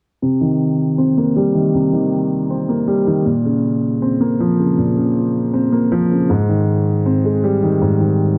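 A mellow, boxy baby grand piano sits up front from 0.2 to 8.4 seconds in this dark, hard-hitting hip hop fragment at 158 BPM in a half-time feel in C phrygian, playing low accompaniment through a filter sweep over Cm7, Bbmadd9 and Abmaj7 chords, all wrapped in a lush hall reverb and a warm production.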